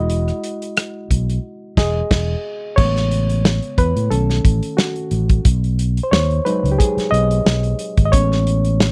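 Romantic and lush, this short cut from a 1970s-style soul piece moves at 90 BPM with a gentle 16th-note swing in E major, where a growly, amped fingered electric bass and a warm, dark-cymbaled soul drum kit with a tight kick sit up front in a dry, close studio sound, a band accent lands at 1.4 seconds, and at 2.8 seconds a reedy, worn, slightly out-of-tune electric piano heard through its built-in speakers takes a solo over chords moving from Amaj7 through B7 to G#7#9.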